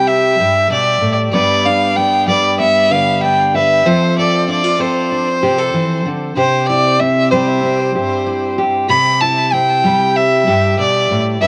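Recorded at home on cassette with moderate studio reverb, this uplifting, anthemic folk passage at 95 BPM in C major sets a nasal, boxy bowed fiddle with light vibrato and tape echo up front on a smooth, even melody over a dark, fingerpicked steel-string dreadnought guitar, both also carrying cassette tape coloring, as the chords move from C to G to F and back to C across its 11.5 seconds.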